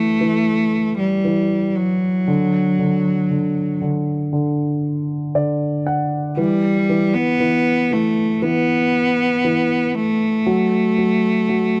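A clear, smooth cello, bowed with vibrato by a single player, carries a longing, heartbroken pop ballad melody up front over a dark, mellow baby grand piano whose long sustain fills the accompaniment, with the piano adding a brief fill at 4.9 seconds in this dry, close 1970s-style studio recording touched by light reverb.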